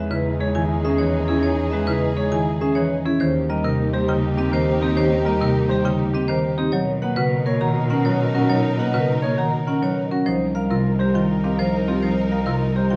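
Bright and propulsive, this excerpt of minimalist classical pattern music in 3/4 sets a hard-mallet vibraphone melody, metallic and ringing with a fast motor vibrato, over a distant, mellow clarinet second line, a buzzing, woody marimba accompaniment up front, lush bowed violin chords, polished grand piano arpeggios and an expressive cello bass with portamento, all in a dark recital-hall ambience.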